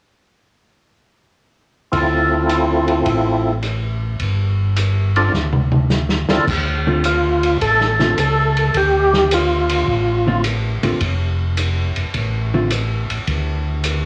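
A swung 4/4 groove at 106 BPM drives this bluesy, soulful soul jazz organ trio in D minor, cut from a longer piece, with a vintage drum kit sounding muffled and lo-fi on cassette tape beneath a round, dark tonewheel organ bass line, both entering at 1.9 seconds. Up front, a fat, lightly overdriven tonewheel organ with percussive key click, chorus vibrato and slow rotary speaker carries the melody over Dm7, G7sus4 and then Dm until 10.4 seconds, while a drum fill leads into the second section. At 6.9 seconds a clean, compressed hollow-body jazz guitar adds picked accompaniment, all set in a small-room home cassette recording.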